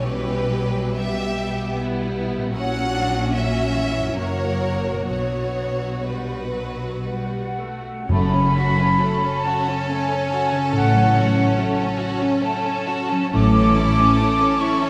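In a rubato 3/4 at 55-80 BPM, this elegiac, solemn slow romantic movement for symphony orchestra, cut from a longer piece, turns from B minor to F# minor at 8.1 s as rich, vibrato-laden violin sections carry a smooth melody and a lush second line over even viola accompaniment, ringing thumb-plucked harp arpeggios, dark cellos in the background and focused double basses, while an airy, mellow flute section enters at 7.1 s and very quiet hard-mallet timpani sound briefly at 8.1 s, set in a wet concert hall reverb.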